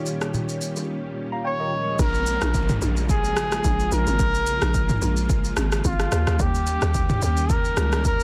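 A lightly swung 4/4 groove at 109 BPM drives this soulful, late-night amapiano excerpt in Bb minor: a deep-kicked, tape-warm house kit of rim click, shaker and toms sits up front from the start, a barky, clean tine electric piano with phaser rides a filter sweep beside chorused vintage string-machine violas and brief, soft-handed bongos and congas, and a veiled, bucket-muted trumpet enters at 1.5 seconds with a forceful, jazzy solo melody full of vibrato and delay. At 2.0 seconds the piano drops out as the drop lands with a hollow, bouncy log drum bass and a faint downlifter in the background, all over a dry, dense, heavily limited master.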